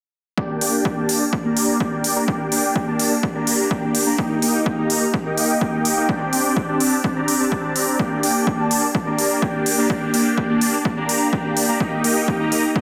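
The recording sits in a lush hall reverb and carries a dense, heavily limited modern master, giving this short cut from a longer festival progressive house track a powerful, emotional weight. Huge, bright supersaw chords lead the riff from 0.4 seconds, their detuned sawtooth unison sounding up front with a fast attack and sustained body, shaped by phaser, a moving notch, sidechain pumping, a low-pass filter and tape echo. Under them, a layered electronic kick drum delivers a punchy, overdriven thump, re-recorded in a large room and cleaned with high-pass filtering on both the kick and the room sound. Crisp, overdriven electronic hi-hats join at 0.6 seconds and sit forward in the mix, likewise re-recorded in a large room. The chords move through a yearning minor progression in a straight four-beat pulse, and all three parts carry on together until just before the cut closes at about 12.8 seconds.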